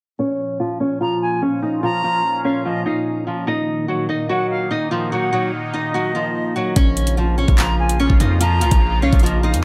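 Half-time drill rhythm drives this menacing, tense hip hop excerpt, though the drums and the saturated, heavy 808-style bass hold off until 6.8 seconds, when a knocking kick, metallic hi-hats and handclaps arrive up front. Before that, a bright fingerpicked nylon-string guitar carries the melody over a sweeping, resonant sawtooth pad of detuned, evolving chords moving from Bb minor to Eb minor, with a filter sweep running through the opening. From 1.0 seconds, a distant, pure concert flute with expressive vibrato adds a second line through digital delay, all set in light reverb.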